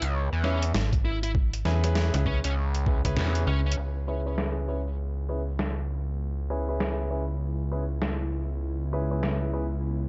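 Heard through a dry, gritty cassette-tape haze with light digital ambience, this gritty, playful glitch hop excerpt in C# minor swings at 99 BPM: a saturated, sawtooth-edged driven synth bass and a snappy, metallic slap-like FM bass sit up front beside a thumpy, compressed electronic kick and a muffled, low-pass-filtered boom bap kit of hi-hat and medium-tuned snare. A distorted, picked bluesy lead guitar with tape echo plays from 0.4 to 3.7 seconds over pumping, filtered grand piano stabs. The kick drops out at 3.2 seconds under a band accent, and a smooth, detuned analog pad with chorus and sidechain pumping enters at 3.8 seconds.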